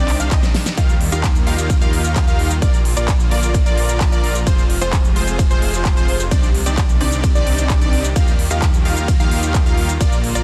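A supersaw pad of slow-attack chords, a bright plucky unison lead playing arpeggios, a huge, thick supersaw riff with vintage 12-bit sampler grit and delay, and a chorused detuned saw bass all pump with the sidechain from the first moment, joined at 0.1 seconds by a big-room kit with a huge snare, crisp hats, handclaps, cabasa and ride, and at 0.3 seconds by a punchy, up-front kick, driving this triumphant, uplifting festival progressive house excerpt at 130 BPM in Eb major through Cmadd9, Ebadd9, Bb and Fm in a dense, heavily limited mix.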